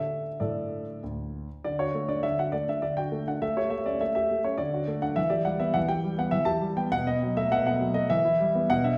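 Cheerful and graceful, this short excerpt from a classical-period piano sonatina moves at 102 BPM in 3/4 with a rubato feel, set in D major and tuned to A4 = 441 Hz. A solo concert grand piano carries the whole 9.0 seconds, spanning D2 to A5, its warm, intimate, natural tone sitting up front with deep bass and audible action noise. The harmony travels from D through A7 and back to D, then on to Em and B5 before settling on Em. A wet recital hall reverb with a 1.4-second decay gives the sound the resonance of a church or concert hall.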